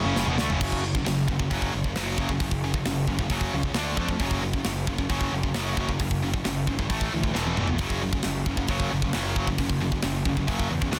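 A double-tracked, high-gain guitar riff drives this aggressive, epic heavy metal excerpt in F# minor at 134 BPM, its bright distortion sitting up front over power chords moving through E5, F#5, D5 and A5. A growly, fuzz-laden picked electric bass adds overdriven weight underneath, while a polished, airy acoustic drum kit with a tight kick, medium-tuned snare and bright cymbals enters with a fill at 0.2 seconds and throws in another at 7.4 seconds. Light reverb and a dense, heavily limited modern master give the 11-second cut from a longer piece a big-room sound.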